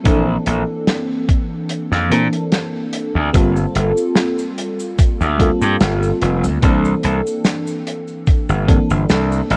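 A gritty, overdriven slap bass sits bright and punchy up front in this woozy, melancholic vaporwave piece at 73 BPM in G dorian, with a light swing on the 16ths. Alongside it, a dreamy, detuned FM electric piano layered with a soft pad moves through Bbmaj9#11, Gm11 and C13, bathed in lush chorus and tape echo. A thumpy sampler-style kick and a soul drum kit of snare, hi-hat and cabasa with a rolled-off top both carry 12-bit grit; the kick drops out from 1.7 to 3.3 seconds, and the recording has a cassette-tape character with light reverb.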